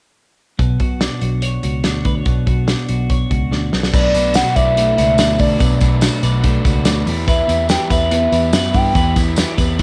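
Bittersweet and restless, this jangly indie pop excerpt opens at 0.6 seconds with bright, twangy twelve-string electric guitar arpeggios carrying tape echo, a dark, foam-muted picked bass, and a loose small-room drum kit up front with a tight kick, all colored by cassette tape. After a drum fill, at 3.9 seconds a hollow, woody clarinet-like synth lead takes the melody with chorus and vibrato, joined by a crunchy overdriven guitar and a jingly tambourine in the background as the harmony moves from Bm7 to Em. Light reverb and a home cassette recording give the whole a lo-fi, intimate sound.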